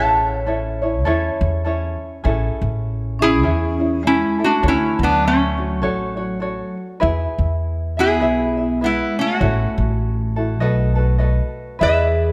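A relaxed swing at 101 BPM in 4/4, with eighth notes given a gentle 60% lilt, carries this languid Hawaiian passage in A major, cut from a longer piece. Up front, a lap resonator guitar carries the melody with slide and fingerpicks, its tone metallic and nasal as it ranges from A3 to A5. Beneath it, a vibraphone struck with medium hard mallets adds a ringing second line coloured by slow motor vibrato, while a tenor ukulele supplies light, fingerpicked accompaniment. An upright bass, also up front, anchors the low end with woody pizzicato on steel strings. After a brief opening on A, the harmony moves at 2.2 seconds through Amaj7, Dmaj7, E, A6 and B7, arriving on E at 11.8 seconds. All four parts play throughout, set in a moderate recital hall reverb that lends an unhurried, spacious glow.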